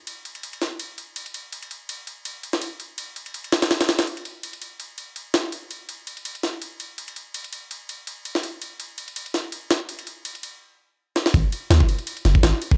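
This short cut from a longer drum and bass track sits in a digital ambience, with a frenetic yet atmospheric mood rooted in jungle. A sampler-style drum kit runs almost the whole way, its kick, snare and ride cymbal compressed, pitched up and gritty, with a thumpy kick and a high-tuned snare placed up front, all shaped by high-pass filtering and a small room ambience. The groove in 4/4 carries a light swing on the sixteenths. A drum fill at 11.2 seconds leads into a drop at 11.3 seconds, where a long sustained 808-style bass enters, deep and sine-like with a fast attack and a mellow decay, spanning F#1 to D#2. The bass sits louder than the drums and falls away just before the drums end at 12.8 seconds.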